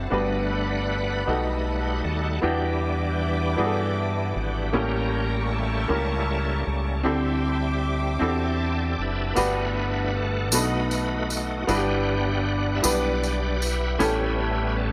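Hopeful and soulful, this slow gospel passage in G major moves at 52 BPM in a straight 6/8, cut from a longer piece. A shouting, lightly overdriven tonewheel organ sits up front and carries the solo throughout, its sound spun through a fast rotary speaker with chorus vibrato. Beneath it, a brilliant, worn grand piano with short sustain plays accompaniment, while a round, punchy fingered electric bass anchors the low end. A dark studio string section adds close, expressive bowed chords with vibrato and portamento until 9.3 seconds, and a jingly, dry tambourine enters at 9.4 seconds. The harmony moves through rich chords such as Gmaj7, B7b13, Em9 and A7b9, all set in an echo chamber reverb with small room ambience.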